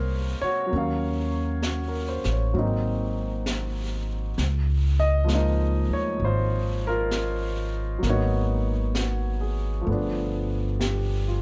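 Wistful and melancholic, this brief fragment of a slow jazz ballad at 66 BPM swings gently in 4/4 as a clear, intimate upright piano with audible action noise and long sustain moves through chords like Ebm9, Db69 and Abm9 over a thumpy, woody pizzicato upright bass sitting up front, while a quieter brushed kit with a high-tuned snare and hi-hat joins at 0.7 s, and the recording has a dry, close sound.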